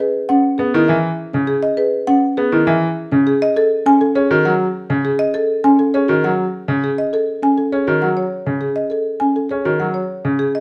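A light reverb surrounds this short excerpt, cut from a longer piece. It is classical minimalist pattern music in 3/4 at 101 BPM, with a straight, hypnotic and propulsive feel. A marimba struck with medium mallets carries the melody between G#4 and G#5, its padauk bars sounding woody and placed up front. Beneath it, a folk marimba with soft mallets plays arpeggios on hardwood bars, dry, rustic and round in tone. A bright grand piano enters at 0.6 seconds with accompaniment in the lower register, brilliant and vintage in colour with a long sustain. The harmony moves from E6 to F#madd9 at 3.0 seconds, then returns to a rootless E6 just before the close.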